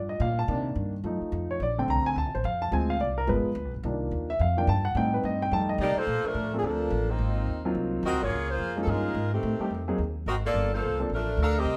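A moderate large-studio reverb surrounds this joyful, brassy big band swing excerpt at 215 BPM, where an intimate concert grand piano with deep bass and audible action noise takes a solo over woody pizzicato upright bass through chords such as Cm9 and G7b9, before a mellow saxophone section enters up front at 5.8 seconds to carry the melody into Bb major from 6.1 seconds, and the piano stops at 11.1 seconds.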